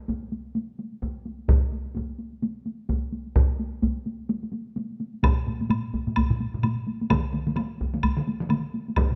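Ceremonial and powerful, this short cut from a longer Japanese traditional taiko piece moves in a swung 4/4, opening with two taiko ensembles struck with heavy sticks, one close, dry and up front, the other sounding in a small room. At 5.2 seconds a third taiko group joins with hard sticks and a compressed, saturated edge, alongside a woody, dry woodblock, and a fourth heavy-stick taiko ensemble enters up front in a small room from 7.1 to 8.6 seconds. Close, detailed miking captures the drums within a moderate recital-hall reverb.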